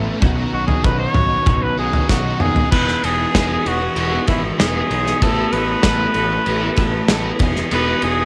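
A clear, vintage-toned trumpet with vibrato carries the melody up front in this wistful, carefree indie rock excerpt, soloing until 2.7 seconds as a drum fill leads into the next section. A loose, gritty drum kit with dark cymbals and a punchy kick sits forward, joined by a clean, compressed twelve-string electric guitar riff, a fuzzed-out overdriven picked bass, and a bright overdriven stack guitar with ensemble chorus set in the background. A very quiet, smooth tonewheel organ with key click and slow rotary speaker holds sustained chords beneath, all in a lo-fi home cassette sound with light studio reverb, moving through chords from Badd9 to Emaj7.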